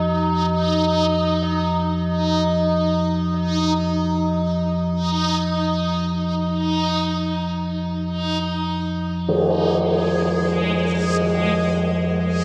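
Desolate and ominous, this dark ambient drone drifts in free time in F minor, heard as a cut from a longer piece. A deep, rumbling drone between F2 and F3 anchors the sound from the start, its slow attack and long release blurred by its own built-in reverb. Above it, a reversed, swelling texture spanning Ab3 to Ab4 adds a dreamy, detuned, granular shimmer, also carrying its own reverb. Solemn tubular bells, struck with a rawhide hammer, ring out metallic arpeggios on Eb4 through tape echo until 9.3 seconds, when a close, dry tam-tam with dark, filtered cymbal tone sounds briefly up front, also through tape echo. The whole mix sits in a wet spring reverb and leans heavily on echo, leaving the drone and swelling texture to hang on until 12.4 seconds.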